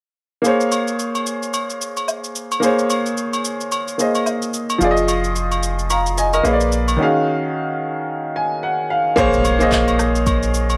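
Hypnotic and soulful, this amapiano excerpt centres on a clear, worn grand piano placed up front with long sustain, set over a layered electronic deep house kit of deep kick, handclaps, rim click and shaker alongside close, dry agogo bells and woodblock; a punchy sine sub bass with a pitch-drop attack arrives at 4.8 seconds, a break from 7.0 seconds ends in a piano fill, and a very quiet electronic impact lands at 9.2 seconds, all within a light reverb.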